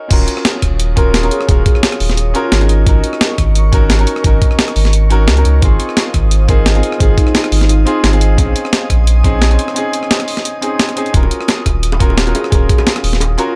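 A lightly swung breakbeat of gritty, tape-warm snare, hi-hat, rim click and crash sits up front over a thumpy electronic kick and a deep, saturated sine sub bass in this dreamy, uplifting liquid drum and bass excerpt, with a short break at 9.8 s. A natural-sounding concert grand piano plays accompaniment through dub echo, while a glassy, ethereal FM pad pumps in the background with chorus and reverb over Ebm7, Ab9sus4, Ab6 and Bbm11 chords. A woody, round marimba carries brief melodic phrases through dub echo from 1.0 s, and tight, high-tuned bongos join in the background at 11.2 s.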